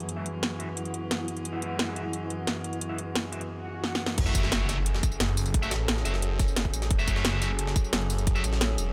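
Dark, aggressive technical drum and bass, cut from a longer piece, opens on an eerie, metallic FM drone holding sustained chords with chorus, reverb and sidechain pumping, while a cloudy, blurred granular pad drifts in the background until 3.5 s. An up-front electronic kit drives the music with a cracking snare, metallic hi-hats, crash cymbal and tambourine, re-recorded in a small room for a tape-tinged edge. Bright, overdriven electric guitar stabs, double-tracked and picked, run through overdrive, a low-pass filter and dub echo across most of the passage. A very quiet electronic swell arrives at 3.6 s, and a drum fill follows at 3.8 s, leading into the drop at 4.2 s, where an impact hits. There a swirling, thick detuned saw bass with phaser, tube saturation and sidechain pumping takes the low end, joined by a tight, up-front electronic kick and a very quiet, gritty jungle sampler-style kit with a pitched-up, high-tuned snare. 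The mix sits in light digital ambience.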